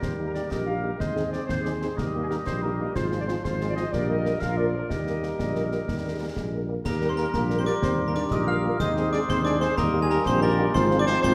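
In a straight 6/8 at 123 BPM, this spirited, proud military-style wind band march in Eb major sets dark trumpets on the melody over a woodwind second line with light vibrato, very quiet distant trombone chords, an up-front tuba bass with vibrato, concert snare, bass drum and clash cymbals, and French horn accompaniment in the background, with a mellow euphonium joining in the background at 5.4 s and a bright, sparkling glockenspiel with brass mallets ringing in at 6.9 s, inside a moderate scoring-stage reverb.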